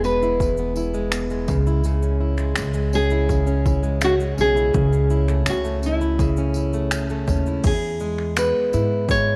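A full-bodied nylon-string guitar carries the melody from the start, its deep classical tone showing a touch of finger squeak, over a fingerpicked jumbo steel-string acoustic guitar, a woody, dark pizzicato upright bass up front and a jingly, bright tambourine sitting close and dry in the background. At 0.2 seconds, overdriven 80s electronic pad drums join with a punchy analog kick, finger snaps, shaker and crash cymbal, sounding re-recorded in a small room. This easy-going, carefree acoustic pop moves at 83 BPM in E major through E, C#m and A/C# before returning to E at 7.6 seconds, all set in light reverb and studio ambience.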